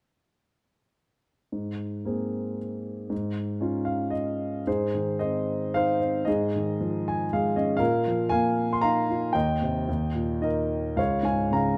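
Close, detailed miking with light reverb puts a dark, mellow grand piano up front, its action noise audible and its long sustain lingering, as it plays a sunny, hopeful classical solo in Ab major and 3/4 at 107-121 BPM with rubato feel, ranging from Db2 to C6 between 1.5 and 11.8 seconds, adding fills at 3.6 and 6.8 seconds as add9 harmonies give way to a Bbsus4, Eb6 and Eb before landing on Db in this excerpt cut from a longer piece.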